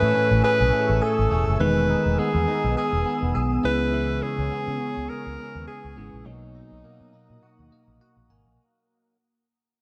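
A lightly swung 16th-note pop groove in 4/4 carries this nostalgic, glossy fragment from a longer piece, where a mellow, up-front tenor saxophone with light vibrato sings the melody over a bell-like tine electric piano through a phaser, a glassy FM pad with ensemble chorus and a slow, ethereal bloom, a twangy, compressed clean guitar riff with chorus and tape echo, and a round, punchy foam-muted fingered bass, all moving through Amaj7, Emaj7, C#m7 and Bmaj7 as the whole passage fades out and the electric piano slips in a fill at 7.4 seconds.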